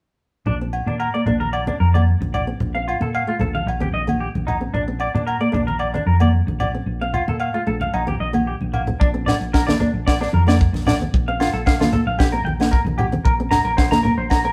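Warm and danceable, this highlife guitar band excerpt in Bb major at 113 BPM sets a twangy, up-front clean electric guitar's arpeggios over a dark, round hollow-body bass, a small fingerpicked nylon-string guitar, ringing agogo bells and thin-skinned congas in the background, all over chords built over Bb, until a drum fill at 8.6 seconds brings in a dry, up-front funk kit with a high-tuned snare and tight kick at 9.0 seconds, in a moderate studio reverb.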